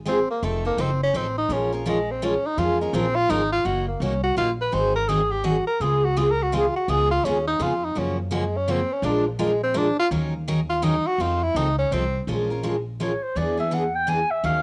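This fragment of a longer piece has the soft, home-recorded sound of cassette tape, with moderate studio reverb. It is a bittersweet, virtuosic acoustic string swing tune in the jazz manouche style, moving at a brisk 167 BPM in 3/4 with swung eighths, in Bb minor. A breathy tenor saxophone takes the lead solo up front from the start, its soft attacks, vibrato and scooped notes giving the line a warm, jazzy character until about 12.2 seconds. A picked steel-string acoustic guitar with a bright, full-bodied jumbo tone supplies the accompaniment throughout, while a pizzicato upright bass on gut strings adds a woody, thumpy, dark foundation underneath. At 13.0 seconds a mellow clarinet steps forward for a short solo, whispered and intimate with light vibrato and a vintage, scooped delivery. The harmony moves through rich jazz changes, from F7 and Bbm7 through Gb6, Dbmaj7 and Ebm7, before ending on E7.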